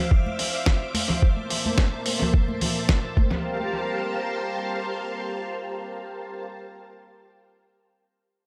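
A lush, vintage string machine sits up front through the whole excerpt, holding slow-attack sawtooth chords with a sub octave, ensemble chorus, a moving notch and a mellow, long-release tail, all breathing with sidechain pumping. This groovy, sensual nu-disco cut moves at 108 BPM in 4/4 with a light 16th-note swing, in G dorian, passing from Dm9 to Bbmaj9#11 and settling on Gm11. Underneath, a thumpy electronic kick leads the loudest layer, joined by a dusty soul sampler-style kit whose compressed hi-hat and medium-tuned snare sound gritty and tape-warm. Close, ringing acoustic congas add percussion, and both the congas and the kit carry an analog delay. The kick, kit and congas have all stopped by 3.4 s, where a second section begins and the string machine carries on alone until 6.4 s. The mix is echo-heavy with light reverb, and the recording is cut from a longer piece.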